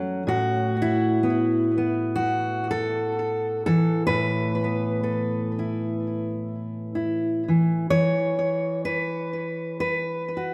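A fingerpicked steel-string jumbo acoustic guitar, full-bodied and up front with a touch of delay, carries this peaceful, pastoral solo folk excerpt in A major at a slow 63 BPM with a gentle swing, moving from Asus2 to E5 at 7.9 seconds inside a dreamy mix soaked in a long plate reverb.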